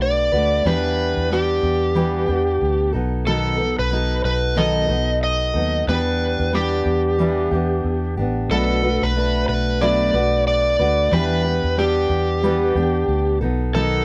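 An overdriven, dark-toned slide guitar carries the melody in this easy-going, sunny acoustic pop excerpt with a swung feel, backed by a full-bodied fingerpicked jumbo steel-string acoustic guitar and a round, punchy, foam-muted vintage electric bass, all three up front as the band plays live together in a lightly reverberant room over chords moving between Bm7, Em7 and B7.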